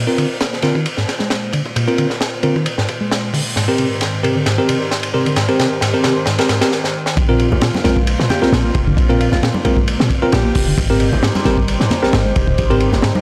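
Energetic and playful, this breakbeat excerpt moves at 133 BPM with a light swing, opening on a swirling, phased analog pad with gritty sampler texture, a round hollow-body picked electric bass riff, bell-like electric piano stabs trailed by analog delay, and a crunchy, dark-cymbaled drum kit with a punchy kick and high-tuned snare, all building under a filter sweep on the pad and drum fills to a short break. At 7.2 seconds the drop lands as a deep, boomy 808-style bass enters, joined moments later by ringing congas, while a smooth alto saxophone with a telephone-filtered tone and delay floats in the background from 8.3 to 10.8 seconds. The chords shift between Bbsus2 and Abmaj7 in a dry, gritty small-room sound touched by plate reverb.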